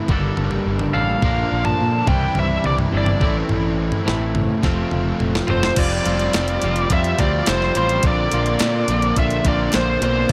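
Bittersweet and moody, this indie rock excerpt moves at 106 BPM in a straight 4/4, with an overdriven rhythm guitar carrying analog chorus alongside a twangy, clean guitar riff in the background, a punchy fuzz bass up front, and a crisp 8-bit drum machine with a thumpy kick and tape-warm character. A biting, overdriven lead guitar with analog delay carries the melody from 0.9 seconds, and a drum fill from 4.6 seconds leads into a new section at 5.8 seconds, where a hollow, flute-like pad enters very quietly beneath the band. A close, dry group handclap adds faint percussion from 6.3 seconds, all set in a digital ambience over chords that move from Gmadd9 through Bb, Cadd9, Am and F to Fsus2 and Bbadd9.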